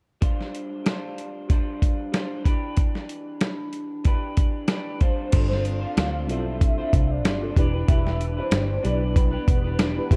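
A lightly swung 4/4 groove at 94 BPM opens this wistful, mellow indie bedroom-pop excerpt, driven by a gritty, compressed, sampler-style soul drum kit with a thumpy kick, medium-tuned snare, hi-hat and crash, re-recorded in a small room and sitting up front. From 0.2 seconds a slightly broken-up, lo-fi electric guitar through a small old amp accompanies it with subtle chorus and vibrato, moving between G7sus4 and Em7. At 5.0 seconds a velvety, detuned synth lead takes the melody in a high register, smooth and sustained with tremolo and ensemble chorus. From 5.3 seconds the arrangement fills out: a reedy, worn, slightly out-of-tune electric piano shimmers with fast tremolo and cassette-tape grit in the background, a very quiet swirling phased analog pad holds long chords, and a round, punchy, foam-muted picked bass anchors the low end up front. The production is dark and dry, with little reverb, giving the piece an intimate, close-up feel.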